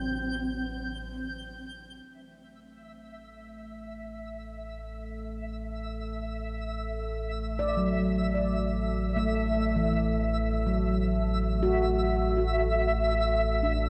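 A ringing, meditative handpan plays arpeggios through a diffuse ambient delay and begins fading out at 2.1 s, while a round sine sub bass and a sparkling FM granular texture with octave-up shimmer fade in beneath and above it, and an evolving, resonant sawtooth drone with pulse-width modulation and chorus enters at 2.7 s, all at a slow 60 BPM in A dorian, moving from C6/A to Am, in this reflective, spacious ambient passage cut from a longer piece and set in a vast, echoing cathedral reverb.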